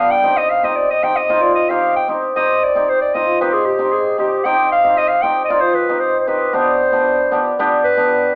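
A classical-style clarinet opens this festive, soulful klezmer piece with a solo from the very start, while a hammered cimbalom sounds beneath it. Both sit up front: the clarinet is warm with a smooth top as it carries the melody between G4 and G5, and the cimbalom rings and shimmers in a lower register with its acoustic accompaniment. The music moves in a straight two-beat metre, resting on a C minor chord before shifting to G at 6.5 seconds. A new section begins at 2.3 seconds as the clarinet's solo passage closes, and the music runs on until both parts stop at about 8.3 seconds, cut from a longer performance. The band plays live in one room with a wet studio ambience, and the recording carries the colour of AM radio.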